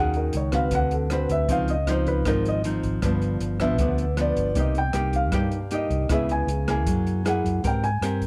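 A straight 4/4 bossa nova groove at 156 BPM drives this sophisticated, breezy fragment of a longer piece. The open jazz drum kit joins at 0.1 seconds with hi-hat, rim click and a boomy kick, its sound smooth and dark with a rolled-off top, as if heard in a small room. Beneath it, a fingered electric bass gives round, amped support in its low register, while an up-front nylon-string guitar supplies full-bodied, fingerpicked accompaniment with a classical character. A mellow grand piano carries the melody as a solo throughout, moving between A4 and Ab5 over rich harmony that runs from Ebm7 through Dbmaj9, G7 and Cm7 to a closing Abmaj9. The recording is close and detailed, with little reverb, so each instrument sounds intimate and clearly defined.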